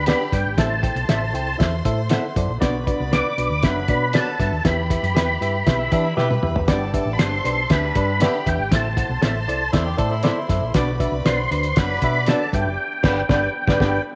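Uptempo 1960s-style soul in G major at 118 BPM, this warm, uplifting passage is cut from a longer piece and moves through a G, Am, Bm, Em progression in a straight 4/4. A tonewheel organ carries the melody, lightly overdriven with chorus vibrato, audible key click and a slow rotary speaker, while a hollow-body short-scale electric bass played with the fingers gives a dark, round bottom. A mellow, reedy electric piano fills in the accompaniment, and an electric guitar through a small old amp adds compressed, slightly broken-up stabs, with a second guitar picking a short riff at 5.8 and 9.7 seconds. Behind them, a bright, lush violin section, a distant, roomy horn section and a very quiet vibraphone with soft mallets and slow motor vibrato trace second lines. The cloth-damped drum kit sits up front, muffled and gritty with a fat snare, tight kick and dark cymbals, playing a fill at 6.2 seconds before the whole band hits an accent from 12.8 seconds. 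Moderate spring reverb and a layer of vinyl crackle give the recording its vintage character.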